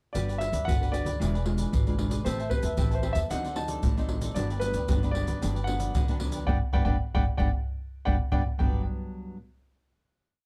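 A compressed samba groove from egg shaker, tight surdo and pandeiro sits up front with a saturated punch, while a woody, growly upright bass plays a thumpy pizzicato samba figure underneath. This short, complete piece mixes samba and choro in a playful, joyful mood and moves at a straight 114 BPM. The nylon-string guitar fills the middle with thumb bass and syncopated plucked chords, and a crisp cavaquinho strums sixteenths higher up. Over them, a warm, polished grand piano carries a motif-based melody in song-like phrases through a Gmaj7, E7b9, Am9, D7b9 cycle that returns to Gmaj7. The whole band hits an accent from 6.5 to 8.6 seconds, then a final chord settles in, with the small guitar ringing on until 9.4 seconds in a close, detailed sound with light reverb.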